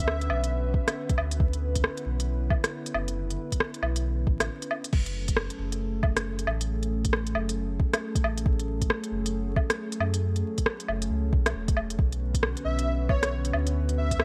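A ghostly, melancholic future garage excerpt built on a warbling, detuned, nostalgic lo-fi tape-like pad with chorus and built-in reverb that pumps against the beat, over a round sine sub bass thickened by tube saturation, while a soft electronic kick enters at 0.7 seconds beside crisp hats, rim clicks, woodblock and crash from a small-room electronic kit, all swung on the sixteenths. An airy, dreamy lead with vibrato, 12-bit sampler grit and tape echo flickers briefly at the start and returns at 12.6 seconds. A short break at 4.5 seconds leads the harmony from Bmadd9 to F#madd9, which moves back to Bmadd9 at 12.0 seconds. Vinyl crackle sits over the dry, up-front mix.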